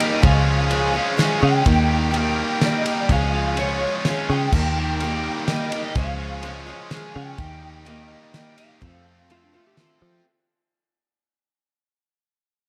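Set in a moderate, lush hall reverb with a touch of small-room ambience, this cut from a longer piece has a big arena sound and fades throughout its length. It is hopeful, open-road folk rock and heartland rock in a straight three-beat metre, with chords that sway between Db and Eb before landing on F at 8.8 seconds. A twangy, slightly broken-up electric guitar through a small old amp carries the melody, thickened by ensemble chorus and slapback echo. Beneath it, a woody, boxy ladder-braced acoustic guitar with old strings is picked with its own slapback, while a biting, double-tracked overdriven guitar plays the riff. A round, foam-muted electric bass enters at 0.2 seconds and sits up front over a dry, damped 70s drum kit in the background, with its fat snare, tight kick and dark cymbals. At 9.3 seconds a clean, compressed pedal steel guitar, played with fingerpicks and slide, adds a faint second line of volume swells.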